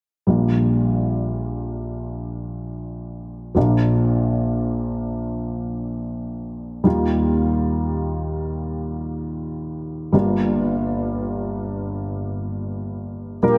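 Heartfelt and hopeful, this pop ballad unfolds in free time in Bb major, cut from a longer piece. A dark upright piano carries the accompaniment from 0.3 to 13.6 seconds, its mellow, woody tone slightly detuned and set up front, moving through Bb6, Bb, Ebadd9 and Gm7 in the low and middle registers. At 13.4 seconds a soft, octave-layered synth lead arrives on a single Bb4, round and full with a sub octave, chorus and vibrato. Alongside it, a chorused pulse-width pad enters with shimmering, retro sustained chords, their soft attack voiced from Bb4 up to D6. A moderate plate reverb lends the whole a gentle sense of space.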